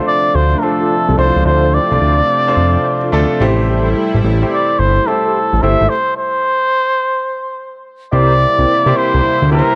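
A swung 16th-note groove at 108 BPM in 4/4 drives this punchy, slick R&B excerpt, moving from Dm7 to Am7 at 3.4 seconds before a stop from 5.9 to 8.1 seconds gives way to C7. Up front, a breathy cup-muted trumpet carries a veiled, whispered melody with vibrato over a fat, thick sawtooth bass with a filter sweep, while an intimate concert grand piano with audible action noise and long sustain plays the accompaniment. A shimmering, detuned pulse-width pad with chorus holds sustained chords, and dark, round synth brass stabs with chorus and digital delay sit in the background of a small room with light reverb.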